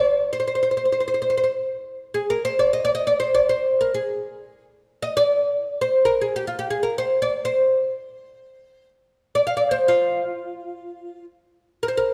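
A fretless oud plays alone from 0.0 to 12.1 seconds, its plectrum-plucked double strings sounding woody and up front between F4 and F5, lending this hypnotic, soulful fragment of makam music a warm voice inside a moderate recital-hall reverb.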